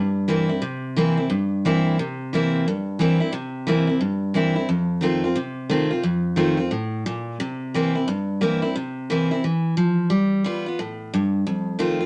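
A moderate studio reverb surrounds a bright, full-bodied dreadnought steel-string acoustic guitar that sits up front, picked and playing solo for the whole 12.1-second clip cut from a longer rock piece. The retro, rollicking feel comes from a light swing on the eighth notes as the guitar moves through a progression of C7, F7 and G7 chords, ranging from its low strings up into the middle register.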